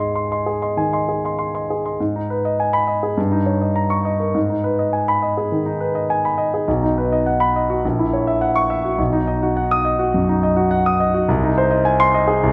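A concert grand piano with a warm, deep-bassed tone sits up front, playing alone through this sparkling, brilliant passage cut from a longer classical virtuoso study in G# minor. It moves at 103 BPM in 4/4 with a rubato feel, and its harmony turns from G#m to B before closing on Ab/C, all captured by close, detailed microphones in a moderate large-studio reverb.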